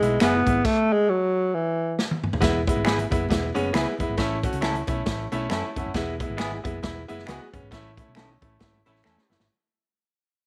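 Uptempo 1960s-style soul in E major at 136 BPM, this joyful, uplifting snippet is cut from a longer piece and swings its eighth notes with an easy bounce. A breathy, up-front alto saxophone with light vibrato and scooped notes carries the melody only for the opening 2.0 seconds, over a clear grand piano, a round, dark hollow-body electric bass and a natural drum kit with bright cymbals and a punchy kick. A stop-time break begins at 0.6 seconds, closed by a drum fill, and from 2.4 seconds the band moves between E and A chords while the whole thing fades out. Filling out the groove are slightly broken-up, lo-fi guitar stabs through a small old amp, background finger snaps and very quiet, damped congas played with soft hands. The piano adds a fill around 5.3 seconds, a band accent arrives late, and a mellow, distant horn section slips in faintly near the end, all set in light reverb and small-room ambience.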